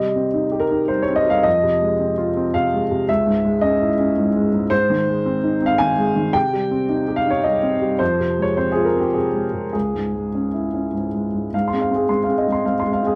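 Neoclassical minimalist piano in Ab major, peaceful and hopeful, moves at 109 BPM in a rubato 3/4 as a solo upright piano, woody and boxy with audible action noise and long sustain, sits up front in an intimate, dark production with light reverb, cycling through Cm, Fm, Dbm and Ab before settling on Ab6 at 11.5 seconds in this short excerpt from a longer piece.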